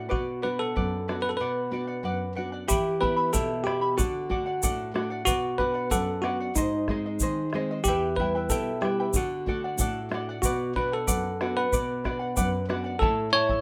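Andean folk in B minor at 93 BPM in a straight 2/4, earthy and melancholic, where a bell-like tine electric piano carries the melody up front through plate reverb over fingerpicked nylon-string guitar with a deep classical tone, shimmering double-strung charango, a dark bombo and a grainy tube shaker that joins at 2.7 seconds, moving through Bm, Em, D and G# before settling on A at 13.0 seconds in this short cut from a longer piece, recorded with close, detailed microphones in a moderate studio reverb.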